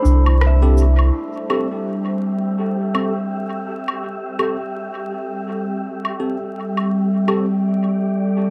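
A swung 83 BPM pulse in 4/4 comes from an electronic shaker, woodblock and rim click, tape-toned and caught in a large room with dub echo, in this spacious, deep ambient dub fragment in A minor that rests on an Am7 chord. A round, soft sub bass sits up front only until 1.1 s, while a warbling, detuned, nostalgic pad holds mellow chords with chorus and its own reverb, and a pure FM synth bell plays gentle arpeggios through chorus and dub echo. A breathy, wind-like tuned noise layer drifts underneath, and from 0.6 s a bright, clean tine electric piano adds stabs through phaser and dub echo, all set in a dark, fairly dry mix flecked with vinyl crackle.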